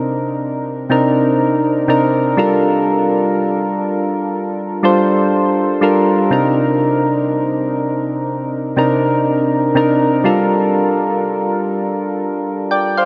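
A soft synth keys part with an electric-piano character sits up front and carries this short R&B fragment alone from start to finish, spanning 13.1 seconds. Its tone is round and mellow, with a quick attack that decays gently, a shimmer of chorus and a hint of filter sweep. The chords move slowly between Cm9 and Gm9, shifting at 2.4, 6.3 and 10.2 seconds, and the lightly swung sixteenth-note feel gives the unhurried pulse a relaxed sway. A huge ambient reverb with a long tail bathes the whole mix, making it dreamy and soaked in reverb. The mood is sensual and full of longing, like a moment lifted from a longer piece.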